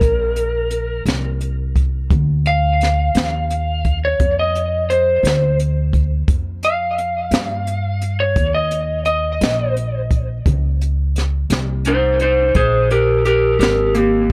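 Slow blues in 12/8 at 57 BPM, soulful and rollicking, this excerpt in B-flat mixolydian moves through Bbadd9, Fsus2, Eb5 and Bb5 under light reverb. An electric slide guitar, played with fingerpicks, takes a solo throughout, its slightly broken-up, compressed tone trailed by tape echo. Up front beside it, a pizzicato upright bass on gut strings sounds woody and thumpy, while a small-room jazz kit played with brushes pairs a high-tuned snare with a boomy kick and a dark, rolled-off top.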